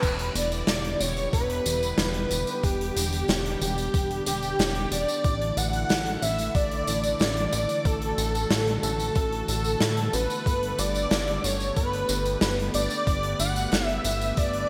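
A bright 1980s-style digital production bathed in lush hall reverb carries this moody, cinematic synthwave excerpt in E minor at 92 BPM, where a thick, dark unison lead with vibrato and cassette-tape delay sings the melody over a smooth, full-bodied analog pad and a glossy chorused synth bass that both pump to the sidechain, driven by a thumpy electronic kick and an up-front big rock kit with bright cymbals, snare and tambourine in gated reverb, while shimmering string-machine violins enter at 0.4 seconds as a background second line through Em7, Asus4 and Gadd9.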